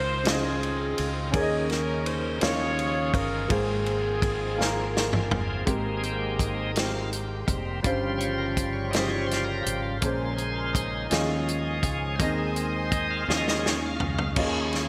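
Slow gospel in a straight-feel 6/8, hopeful and reverent, where a mellow, vintage-toned saxophone section carries the melody up front with vibrato until 5.3 seconds, over woody upright piano washed in lush chorus, a dark, round fretless bass and a punchy soul drum kit with gated reverb that enters at 0.3 seconds. From 5.7 seconds a shouting, lightly overdriven tonewheel organ takes a solo through a slow rotary speaker, with audible key click, while a bowed studio string section with portamento sits in the background, and drum fills close each half. The bright 1980s-style digital production is bathed in a lush hall reverb, and the clip is cut from a longer piece.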